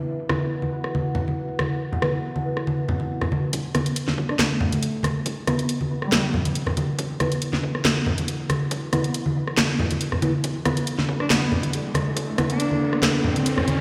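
A half-time deep dubstep groove at 139 BPM, swung on the sixteenths, is set by a garage kit with a cracking snare and hats alongside low-tuned, thick-skinned congas carrying dub echo, with a muffled, overdriven kick arriving at 3.5 s as the build-up begins. A moody analog pad holds sustained chords under filter sweeps while muted, detuned dub chord stabs sit in the background with phaser and echo, and a nasal, intense bowed cello with light vibrato carries the melody through a low-pass filter and dub echo. A riser enters at 11.8 s in this heavy, meditative excerpt, all soaked in a lush hall reverb and the stony sound of a big system played in a bare room.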